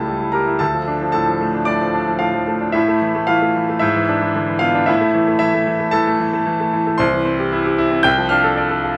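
A brilliant, polished grand piano plays alone and up front, spanning C2 to G6 in a passionate, agitated classical virtuoso study at 113 BPM in 4/4 with a free rubato feel, its long sustain ringing in light reverb as the harmony moves from A7/C# through Dm, A5 and E7/G# to C and Dm7/C in this nine-second fragment cut from a longer piece.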